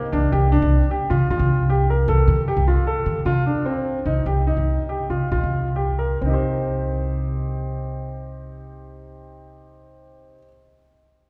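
Urgent and hypnotic, this contemporary instrumental excerpt moves in 5/4 at 129-154 BPM in C dorian, slowing between 2.9 and 6.2 seconds before a new section arrives on C minor. A bright baby grand piano plays brilliant, long-sustaining arpeggios up front, while a woody, thumpy pizzicato upright bass carries the low end. A wet church reverb gives the recording the spacious air of a large hall.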